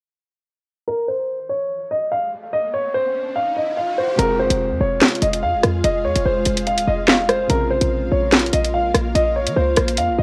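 A half-time drill groove at 145 BPM in 4/4 drops in at 4.2 seconds, its electronic kit sitting up front with a sharp snare, bright hi-hats, handclaps and rim clicks, all given a tape-warmed edge. This cold, dark hip hop fragment in F minor opens at 0.9 seconds with a woody, intimate upright piano melody, vintage and smooth, with audible action noise, dressed in cassette tape, tape echo and a low-pass filter sweep while an electronic riser builds toward the drop. With the drums comes a short, punchy 808-style bass with a tight sine tone, a noise layer and a fast, decaying attack, pushed up front alongside a dark, mellow concert grand piano that plays a boxy, deep-bassed accompaniment in the background. At 4.8 seconds an ethereal, airy pad enters with slow-attack sustained chords built from detuned sawtooth and triangle unison voices, wrapped in ensemble chorus and built-in reverb. The harmony moves from Fm to Bbmadd9 over a home-recorded cassette ambience, and the piece is cut from a longer work.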